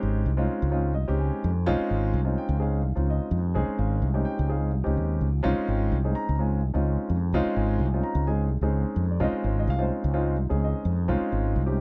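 A dry, close 1970s-style studio sound frames this slick, soaring electric jazz fusion excerpt, where a round, punchy fretless electric bass with subtle chorus sits dark and up front beside warm grand piano accompaniment that adds a brief fill at 0.7 seconds over a Dbmaj9 chord.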